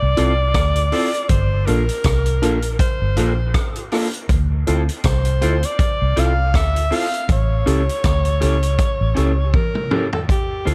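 A gently swung 80 BPM groove in D minor drives this bittersweet, longing lovers rock reggae passage, where a punchy, up-front vintage drum kit with gated reverb and a rolled-off top joins a dark, foam-muted fingered electric bass, a mellow tine electric piano outlining the Dm7, Gm7 and A7 chords, and lo-fi, slightly broken-up guitar stabs with subtle chorus and dub echo, while a breathy alto saxophone carries the jazz-style solo melody in subtone with vibrato, scooped notes and dub echo of its own, continuing through a drum fill that arrives at 9.5 seconds.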